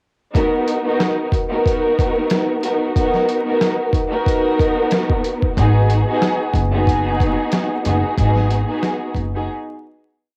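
A lush, bowed string section opens at 0.3 seconds with chopped Bmaj7 chords repeated like a sampled loop, full of vibrato and portamento, as an overdriven, compressed sampler-style drum kit lays down a gritty, swung boom-bap beat at 92 BPM with a thumpy kick, a backbeat snare layered with rim click, and hi-hat, and a woody pizzicato upright bass joins at 5.6 seconds with a deep looped line under the shift to B6/F#, all steeped in cassette-tape grit, vinyl crackle and small-room ambience, giving this dark hip hop piece a home-recorded character before it fades from 8.2 seconds.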